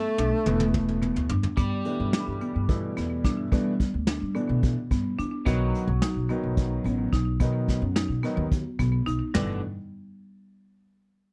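Bright and intricate, this dry progressive instrumental in 7/8 opens with a drum fill from the vintage brush kit as a breathy, whispered tenor saxophone appears only until 1.0 seconds, while a twangy, slightly broken-up electric guitar with phaser carries a second line, a buzzing hard-mallet marimba with slapback echo spins arpeggios, a growly pizzicato upright bass sits up front, and a clear, worn baby grand piano joins at 0.5 seconds to accompany the shift from a rootless Gadd9 through Gadd9 to B.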